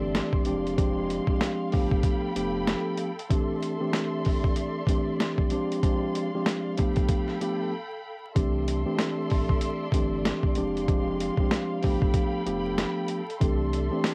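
Soulful and nostalgic, this boom-bap hip-hop cut moves at 95 BPM in C major with a swung 16th feel, its cassette-tape grit and vinyl crackle giving it a homemade, lightly reverberant character. A mellow tine electric piano sits up front, clean and direct, over lush bowed strings with expressive vibrato, cycling through Fm6, G9 and C69. A gritty, pitched-down sampler drum kit with a thumpy kick and high-tuned snare drives the groove, while a round sine sub bass plays until 2.7 seconds, drops out, and returns at 8.4 seconds just after a short break.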